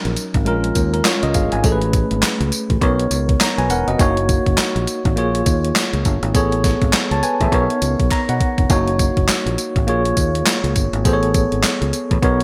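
R&B new jack swing excerpt with an upbeat, flirty swung groove, where an up-front, clean tine electric piano comps through lush seventh and ninth chords over a growly, punchy fingered bass and a crisp 8-bit drum machine with a thumpy kick, snare, hi-hat, tambourine and handclaps treated with gated reverb, plus a very quiet live-room group handclap, with electric piano and drum fills around 8 seconds, all set in a bright 1980s-style digital production under a moderate plate reverb.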